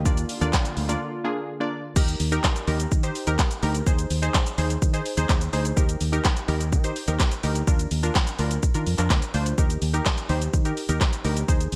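Dance-pop with a euphoric, summery glow, this cut from a longer track moves in a straight 4/4 and has a bright, 1980s-style digital sheen with light reverb. A mellow, detuned sawtooth pad with chorus and a soft attack opens the piece with sustained chords and pumps against the sidechain, then drops away at 1.9 seconds, during a brief break that runs from 1.0 to 2.0 seconds. A glassy wavetable pluck carries the accompaniment throughout, with a crystalline, evolving tone, a noise layer, a filter sweep and a fast, decaying attack, all treated with chorus and sidechain pumping. Underneath, a fingered electric bass sits up front with a punchy, amped, direct sound that also breathes with the sidechain. The electronic house kit is layered and up front, with a punchy kick and snare, bright hi-hats, handclaps, shaker and crash, all wrapped in gated reverb. The harmony moves between Bb, Eb and Ab over Eb, keeping the mood sunny and buoyant.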